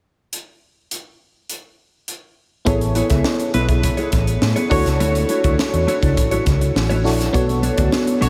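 A dreamy mix soaked in huge ambient reverb frames this breezy, urban slice of polished 1980s jazz-funk pop, cut from a longer piece and moving at 103 BPM in a straight 4/4 in A major. A crisp fusion drum kit opens alone at 0.3 s, with hi-hat, a punchy kick and a high-tuned snare sitting up front in a small, pumping room. A glassy FM electric piano with a bell-like attack and lush chorus slips in just ahead of the band, and at 2.7 s the harmony settles onto Amaj9 before moving through Dmaj9 and Bm9. Here a mellow, dark, compressed electric guitar plays a clean, fingered riff through analog chorus, while a vintage foam-muted fingered bass adds a round, amped low end. From 3.5 s a warm jazz-style horn section with vibrato and a smooth top carries a second line in the background, trailed by tape echo.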